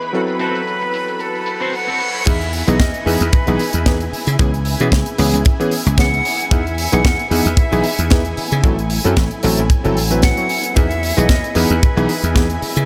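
This sunny, feel-good nu-disco excerpt opens on a filter sweep over a vintage electric grand piano with sidechain pumping and delay, rich bowed strings, a brief twangy chorused electric guitar riff tucked in the background, a tight funk kit with a high-tuned snare, and a breathy jazz flute melody with a crisp chiff. A very quiet reverse cymbal at 1.4 seconds leads into the drop at 2.3 seconds, where a punchy, foam-muted thumbed slap bass and an up-front kick enter. The flute carries the tune over lightly swung sixteenths and lush sixth and seventh chords in a dreamy mix soaked in huge ambient reverb.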